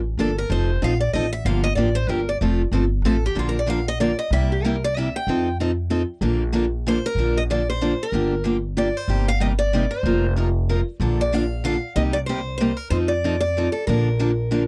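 Acoustic string swing in the jazz manouche style, charming and playful at 189 BPM in a swung 3/4 in Bb major, with a woody, thumpy pizzicato upright bass on gut strings, a bright, fresh-stringed parlour guitar taking a picked solo melody through the first 7.2 seconds, and a second boxy, warm parlour guitar picking the chords, all captured up front in a dry, close 1970s-style studio sound with light reverb.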